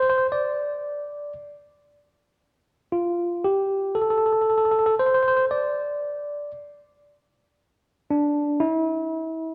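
In a straight 10/8 metre, this hypnotic, soulful Turkish excerpt features a lone tine electric piano, clean and up front through its built-in speakers, playing solo between D4 and D5 for 9.5 seconds inside the lingering wet bloom of a scoring-stage reverb.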